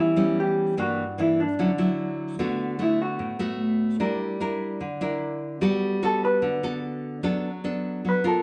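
Sunny and breezy, this bossa nova clip in D major moves at 148 BPM in a straight 4/4, with a dark, clean hollow-body jazz guitar picking the melody up front and taking a solo from 2.4 seconds. Beneath it, a warm, fingerpicked nylon-string guitar carries the accompaniment throughout, its deep classical tone marked by audible finger squeak, moving through chords such as Gm6, Dmaj9 and Gmaj9. The two guitars sound like a live duo in one large studio, wrapped in moderate reverb.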